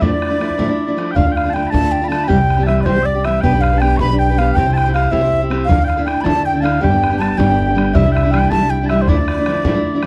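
A bright wooden baroque flute carries the melody of this Celtic jig, its airy, straight tone and crisp attack sitting on top of a dark yet spirited mood in D dorian. The piece moves at 106 BPM in a lively 6/8. Mellow small bagpipes weave a sweet, continuous second line with vibrato. A fingerpicked steel-string dreadnought guitar sits up front with fresh strings and a full-bodied accompaniment, while a boomy, open bodhran sounds distant, as if in a large room. From 1.2 seconds, a pizzicato upright bass adds a woody, growly low end as the chords circle through Dm, C, G/B and Cadd9. The close, dry 1970s-style studio sound carries a light touch of reverb, and the passage is cut from a longer piece.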